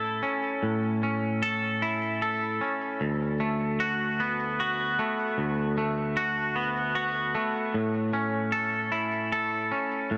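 A slow, straight 6/8 pulse at 51 BPM in dotted quarters carries this euphoric, soaring rock excerpt in D major, where a bright, clean, twangy electric guitar plays alone and up front from start to finish, picked and compressed across a range from D2 to A4. Its tape echo blooms into a huge ambient reverb with a 7.5-second tail, while the harmony moves from A to D6 at 3.0 seconds and settles back on A at 7.7 seconds.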